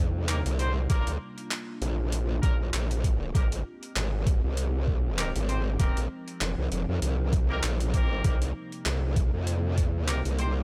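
Swaggering and gritty, this glitch hop excerpt in C minor rolls at 98 BPM with a light swing, as an up-front growling, wobbling bass with tube saturation and a pitched-down, overdriven, thumpy electronic kick anchor it, while a boom bap sampler-style kit of handclaps and hi-hat adds crunch from 0.3 seconds, bright vintage horn stabs with light vibrato and dub echo punch through, and a dark, nostalgic, warbling tape-like pad with sidechain pumping sustains chords moving from Cm7 through Bb, Abmaj7 and F7sus4, all in a dry mix.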